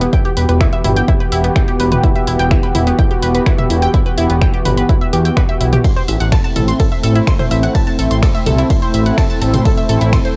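A punchy electronic kick drum sits up front from 0.1 s, driving this cinematic melodic techno piece in E minor at 126 BPM, alongside a fat, nasal, detuned analog bass that pumps with sidechain compression. Above them, a lush unison pad holds slow-attack sawtooth chords from Emadd9 to Am at 5.8 s, while a round, bright analog pluck with ring modulation, a noise layer and a filter sweep spins arpeggios through chorus and analog delay; both pulse with sidechain pumping and carry cassette tape colour. An analog drum machine, re-recorded in a large room like the kick and likewise tape-treated, adds finger snaps, hi-hat, ride cymbal and toms, all within light reverb and a home cassette recording sound on this cut from a longer piece.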